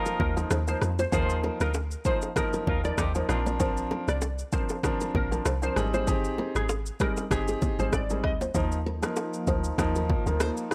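A dry, gritty small-room sound frames this sunny, joyful afrobeats excerpt, with a swung sixteenth feel over chords moving from Ebsus2 through Bbadd9 and Abmaj7. Up front sit a polished grand piano, an electronic kit with a deep, tape-warm kick, rim click and shaker, and a round, dark log drum bass with a percussive FM bite. A brief, punchy horn section with light vibrato and analog delay opens the piece, while a fingerpicked nylon-string guitar riff and ringing bongos and congas sit in the background alongside a glassy, warbling wavetable pluck melody, before a hollow, flute-like pad enters at 8.8 seconds.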